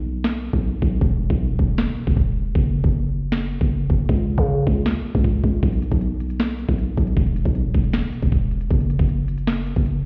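Heard muffled as if through a wall, this hip hop and trap excerpt sits in a stone room's light reverb with its top end dulled. A growling, buzzy 808-style bass with a fast attack and decaying tail runs the full 10 seconds, while an overdriven electronic trap kit of knocking kick, sharp snare and crisp hi-hats sits up front from 0.2 seconds. The half-time feel carries a triumphant yet wistful mood, and the opening 5.6 seconds form a break.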